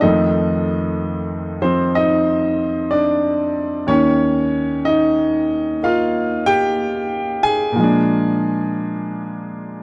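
Solo jazz piano at 62 BPM in 4/4, with a swung eighth-note feel and a playful, sophisticated mood. A clear baby grand carries everything alone from 0.0 to 9.8 seconds, ranging from Eb2 up to Ab5. The harmony moves through dominant sevenths, from F7 to Eb7 at 3.9 seconds and on to Bb7 at 7.8 seconds. The piano sits up front with an intimate, natural tone, long sustain and audible action noise. The recording has the dry, close character of a 1970s-style studio with light reverb, tuned to A4 = 445 Hz, and this short passage is cut from a longer piece.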